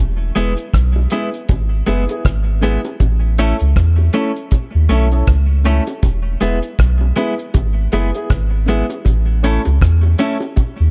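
A swung sixteenth-note roots reggae groove rides on a cloth-damped, thuddy drum kit of tight kick, hi-hat and rim click, beneath a deep, round dub sub bass up front, a clean electric guitar with tape echo, polished grand piano stabs and low-tuned bongos in the background from 1.0 seconds, all moving between E and A in a sunny excerpt cut from a longer piece.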